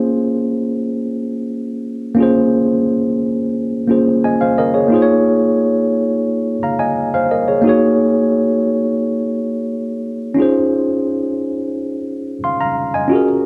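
A worn, slightly out-of-tune tine electric piano plays alone and up front through built-in speakers, lightly overdriven as it moves from Bbm7 to Ab9sus4 at 7.7 seconds and settles on Dbmaj7 when a new section begins at 10.4 seconds. This short soul passage, cut from a longer piece, has a silky, cinematic mood in straight 4/4. A moderate plate reverb and a dark, warm production give the sound a spacious glow.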